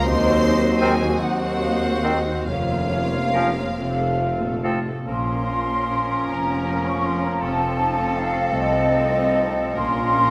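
A scoring-stage reverb wraps this brief excerpt from a slow romantic orchestral movement in Bb minor, its solemn, yearning mood unfolding in a rubato 6/8 at roughly 45-55 dotted-quarter beats per minute. The large flute ensemble, airy and crisp at the attack, sits closest and loudest on a second line, while a clear violin section carries the vibrato-laden melody and a rich, very quiet second violin section and a distant, lush viola section fill in beneath. Rich cellos and double basses anchor the bass, joined until about 4.9 seconds by a soft, very quiet tuba; dark French horns hold sustained chords in the background throughout, and a clear trombone section and dark, roomy trumpet stabs drop away at 4.7 seconds. From 0.8 seconds a bright oboe and a vintage-tinged, very quiet clarinet add second lines while a clear bassoon joins the accompaniment. The harmony moves from Cdim/Eb through Bbm/F and F, then into a second section at 5.1 seconds that turns from Bbm to F7 and back to Bbm.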